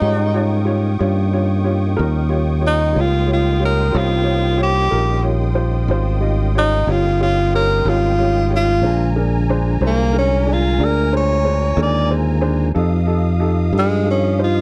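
A dry, close 1970s-style studio sound frames this rollicking, gritty slow blues in 12/8 at 61 BPM, where a warm, breathy-subtoned tenor saxophone solos up front with vibrato and scooped notes over a growly fingered electric bass, woody upright piano, a clean tonewheel organ with key click and slow rotary speaker in the background, and the shimmering, reedy sustained chords of a musette accordion, moving through Eb7, Bb7 at 8.8 seconds and F7 at 12.8 seconds in this 14.6-second cut from a longer piece.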